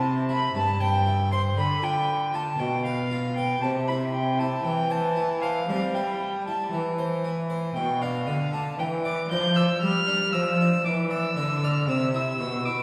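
A dark, nasal gut-string violin carries the melody from the opening moment, with a plucked, full-bodied French-style harpsichord and a rich, reedy cello playing beneath it in a flowing, radiant baroque-style sonata movement in C major. The period-style playing moves with rubato at about 58 BPM in 4/4, and the harmony passes from C through B diminished and G7 over B before coming back to C near 11.9 seconds. A wet stage reverb places the listener further back in the room, and lossy compression artefacts tinge this short fragment cut from a longer piece.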